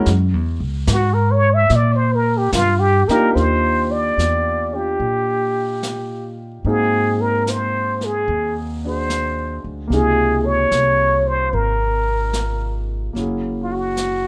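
Jazz ballad at 73 BPM in a swung 4/4, intimate and tender, cut from a longer piece. A plunger-muted trumpet carries the melody up front from 0.9 s, breathy and wah-inflected with vibrato, a soft attack and plate reverb, over a pizzicato upright bass with a woody, thumpy gut-string tone, a long-sustaining grand piano with audible action noise, and a brushed snare and hi-hat kit. The harmony moves through Ebmaj9, Ab7, Dbmaj13 and Gb9 in a moderate club ambience.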